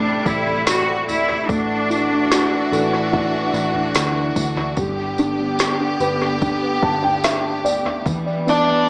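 An echo-heavy mix with a spring reverb and a small-speaker sound frames this brief, melancholic pop ballad cut from a longer piece, moving in a straight 4/4 through Am7, Dadd9/A, G and Em. A felt-muted upright piano, soft and intimate under thick felt and touched with analog delay, carries the accompaniment beside a lush, bowed studio string section holding sustained chords with smooth vibrato. A bright symphonic cello section adds an intense second line at the opening, stopping at 3.1 seconds, while a dark, round, foam-muted electric bass sits low in the mix. From 0.3 seconds a produced R&B drum kit with a soft kick and woody snare joins a jingly tambourine, both carrying analog delay. The piano plays a fill from 6.4 seconds, and a dark, overdriven lead guitar, picked and up front, enters at 8.5 seconds just as the passage ends.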